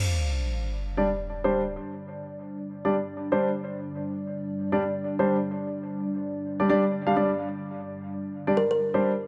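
A swung 4/4 house groove at 128 BPM opens with an up-front electronic sub drop impact, setting a swaggering, aggressive tone over a G5 chord. A deep, moody analog pad of detuned sawtooth and square tones holds sustained chords through chorus and phaser as a filter sweep runs across it, while a natural, up-front grand piano fires stabs through dub echo from 1.0 seconds. At 8.6 seconds a soft, woody kalimba plucks a brief Bb4, also trailing dub echo, inside a light reverb.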